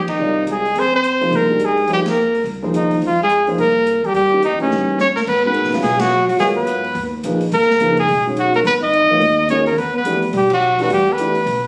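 A warm upright piano and a woody pizzicato upright bass open this intense, spiritual modal jazz excerpt, joined almost at once by a clear, breathy trumpet with vibrato carrying the melody up front and a dark, close-miked trombone with light vibrato playing a second line in the background. An open acoustic drum kit with dark cymbals, a boomy kick and a medium-tuned snare swings underneath, with band accents punctuating the line and a drum fill from 4.7 to 5.3 s leading into a second section. The moderate studio ambience has a roomy, phone-in-the-room quality, and the piece is cut off at 11.7 s.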